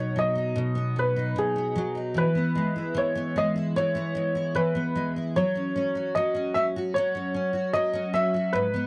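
Pop at a relaxed 75 BPM in straight 4/4, this short excerpt cut from a longer piece feels carefree and heartfelt. A clear upright piano carries the melody between G#4 and E5 from start to 8.9 seconds, its woody, slightly detuned tone ringing with long sustain up front. Beneath it, a picked steel-string acoustic guitar supplies accompaniment from G#2 to F#4, its warm, full-bodied dreadnought sound double-tracked and also sitting up front. The harmony moves from B to E at 2.2 seconds and on to F#5 at 5.4 seconds. Light reverb touches a dry, close studio sound in a 1970s style.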